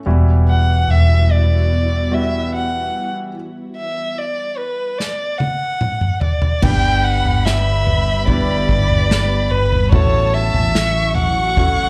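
Heard through a venue's PA with a light club reverb, this heartfelt pop ballad opens on an intimate grand piano, its action noise audible and touched by slapback echo, over a round, foam-muted electric bass up front and an ethereal detuned pad with ensemble chorus. A dark, woody solo violin sings the melody with vibrato, and after a stop at 3.3 seconds an acoustic drum kit with a punchy kick enters at 5.0 seconds with a fill. At 6.6 seconds a distant, lush violin section adds a high second line with slapback echo and delay.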